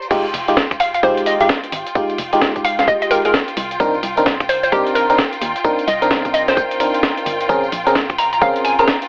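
A swung two-step garage groove drives this soulful, moody UK garage excerpt: a tight, overdriven electronic kick sits beneath a compressed, pitched-up breakbeat kit of high-tuned snare, hi-hat, tambourine, finger snaps and crash, with a dark, organ-like FM bass underneath. Glassy, bell-like FM electric piano stabs with chorus and digital delay sit up front over Fm9, Cm9 and Bbm9, while a bright violin section holds sustained chords with sidechain pumping, and from 0.8 seconds a hollow, bouncy square-wave pluck carries the melody with chorus and 12-bit sampler grit. Light reverb, vinyl crackle and a telephone-like tone colour the whole mix.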